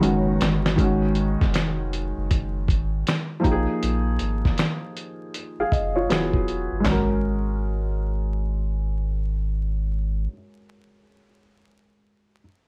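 A dusty soul drum kit opens this reflective, nostalgic lo-fi hip hop excerpt with a fill of kick, snare, toms, hi-hat, snaps and handclaps, gritty and thumpy with a fat snare, while a very quiet, blurred granular cloud pad briefly glows underneath at the start. From the very first moment, at 79 BPM with a lazy 16th-note swing in G# dorian, a soft, felt-muted upright piano with audible action noise plays mellow accompaniment through cassette tape and a low-pass filter that sweeps from 0.8 seconds, over a round, deep sine sub bass. The drums drop out at 7.1 seconds, and the bass and then the intimate piano carry on under light reverb and vinyl crackle.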